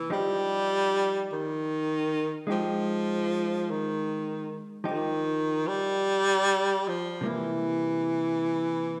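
A wet, reverberant space surrounds this short jazz fragment, with the long tail of a church or concert hall hanging around every note. The mood is intimate and smoky, moving at a slow, swung crawl in 4/4. Up front, a baritone saxophone carries the melody in a narrow, low range, its subtone breathiness and vibrato giving it a soft, husky voice. Beneath it, a vintage hollow-body electric guitar plays clean, picked, compressed accompaniment with a dark tone, sitting well back in the balance. The harmony rests on Fm9 for most of the passage before turning to C7 at 7.2 seconds, and the fragment, cut from a longer piece, ends at 9.0 seconds.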